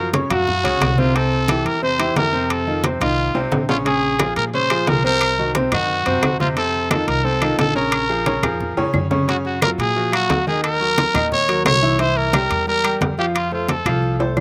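Driving and danceable, this salsa in Bb minor moves at 177 BPM in straight 4/4. A raspy, growling solo trumpet with light vibrato and slapback echo leads up front, over a brilliant baby grand piano accompanying with the same echo, and a dark, steel-strung pizzicato upright bass underneath. Ringing metal-shell timbales, low-tuned thin-skinned congas in the background and woody claves entering at 4.2 s keep the groove, with drum fills at 3.4 s and 8.8 s, all in a dry outdoor sound with little reverb.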